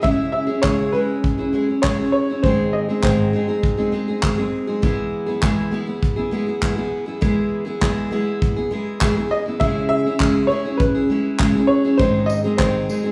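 A picked steel-string acoustic guitar, full-bodied and up front, opens together with a brushed drum kit in a small room, with a punchy kick, handclaps and tambourine, while a clear, woody upright piano sings a short melody in a tender, reflective acoustic pop mood at 100 BPM in C# minor. The chords move from C#m to G# to E, and the piano drops out at 4.2 seconds, leaving guitar and drums to carry the straight 4/4 until its vintage-toned melody returns at 9.3 seconds over C#m and G#. Light studio reverb softens this section cut from a longer piece, which is tuned slightly below standard pitch.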